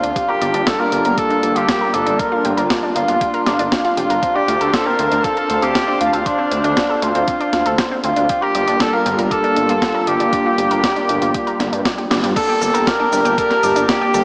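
Synthwave cut from a longer piece, moody and driving at 118 BPM in a straight 4/4, where a distant, roomy tenor saxophone with light vibrato carries the melody up front through analog delay over a shimmering chorused pulse-width pad and a thick detuned saw bass that both pump against the sidechain, a nasal wave-folded analog pluck arpeggiating in the background with chorus and tape echo, an overdriven 12-bit drum machine of cabasa, crash, hi-hat and medium-tuned snare joined by a thumpy electronic kick from 0.2 seconds, all moving through Gm7 and Dm7 until a drum fill and band accent at 12.1 seconds lead to a closing Gmadd9 at 12.4 seconds, in a dreamy mix soaked in lush hall reverb with a small speaker sound.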